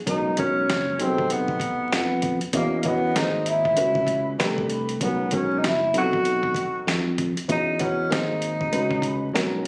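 A breathy tenor saxophone carries the melody with subtone, vibrato and scooped notes in this smooth, intimate jazz-hop excerpt at 97 BPM in B major, with swung 16ths over a dark, boxy grand piano, a round, punchy fingered electric bass and a gritty, pitched-down boom bap sampler kit with a thumpy kick, all heard as if captured on a phone in a club-like room with light reverb and vinyl crackle.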